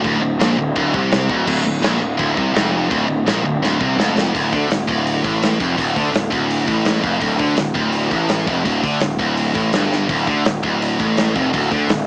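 Aggressive and relentless, this heavy metal passage cut from a longer piece charges along at 167 BPM in D minor. A scooped, high-gain, double-tracked guitar grinds out a distorted riff with a cassette-tape grit, while a growly fuzz bass pushes up front and a modern studio drum kit drives with a punchy kick, bright cymbals and china and crash cymbals, landing fills at 3.6 and 9.9 seconds. The whole thing sits in a small room with light reverb, captured as a home cassette recording with a small-speaker sound.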